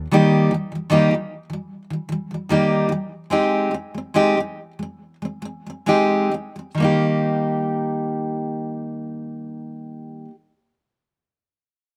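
Pop in a carefree, sunny mood: a lone fingerpicked steel-string acoustic guitar plays accompaniment from 0.0 to 10.3 seconds, its jumbo body sounding bright and full-bodied, with audible finger squeak and placed up front. The pace slows through the opening section until 6.8 seconds, as the chords move from Eb to Abmaj7 and back to Eb. Recorded outdoors with little reverb, the sound is dry, and this short passage is cut from a longer piece.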